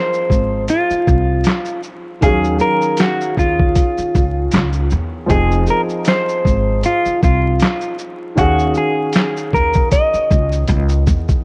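Nostalgic and melancholic, this lo-fi hip hop excerpt moves at an unhurried 78 BPM with a gentle 16th-note swing in Eb dorian, circling between Fm7 and Ebm11 under a light reverb, an echo-heavy mix and vinyl crackle. A dark, clean, fingered electric guitar carries the melody up front, colored by harmonic tremolo, a low-pass filter and analog delay, while a woody upright piano with long sustain supplies accompaniment through a cassette tape effect, filtering and delay of its own. A muffled, pitched-down sampler-style kit with a thumpy kick, handclaps, hi-hat and shaker joins at 0.1 s, a pizzicato upright bass enters at 0.3 s, and a drum fill closes the passage from 10.7 s.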